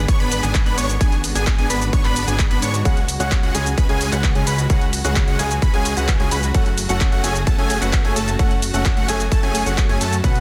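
Festival progressive house at 130 BPM in F# minor, this anthemic, euphoric excerpt layers huge, detuned supersaw chords and a bright, wave-folded unison lead arpeggio over a fat analog bass with sidechain pumping, a punchy up-front electronic kick and a big-room kit of handclaps, hi-hat and shaker, while a very quiet bowed string section holds sustained chords, a felt-muted upright piano enters in the background at 2.8 seconds, and the chords move from G#dim through C#sus4 to F#m under a dense, heavily limited master with light reverb.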